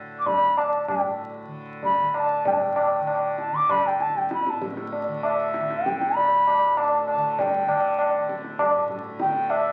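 A softly plucked, buzzing tanpura drone opens this Hindustani classical excerpt, its shimmering low tones sitting in D raga durga with the tuning set slightly flat at A4 = 439 Hz. Almost at once a mellow bamboo bansuri takes the melody up front, its pure tone carrying vibrato, a crisp attack and rolled-off highs. A high-tuned tabla joins at 0.3 seconds, with a short ring and a distant, large-room character. The music moves in a straight 4/4 at around 97 BPM, speeding up throughout, and a new passage begins at 2.5 seconds. The mood is devotional and radiant, heard through a wet studio reverb and the crackle of a very old 78 rpm record.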